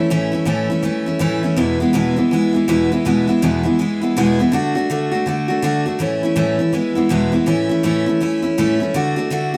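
Rollicking and retro, this short rock clip from a longer piece has a lively swung eighth-note feel, carried entirely by a solo picked steel-string acoustic guitar. The jumbo-bodied guitar sits up front with a bright, full-bodied tone and the snap of fresh strings, moving through A, E and D chords and shifting into a new section at 7.5 seconds. A moderate studio reverb gives the live, single-room recording a natural sense of space.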